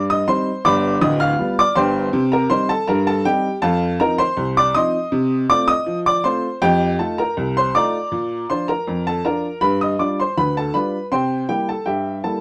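Jaunty and lively, this ragtime piano piece moves at 80 BPM in a straight 2/4, with a single upright piano playing solo across the whole 12.4-second excerpt and ranging from deep bass notes up into the high treble. The piano sits up front with a woody, boxy tone and long sustain, working through a progression that opens on Cm and passes through F7 and Bb before landing on C7. A moderate club ambience surrounds the piano, and the production is dark and warm.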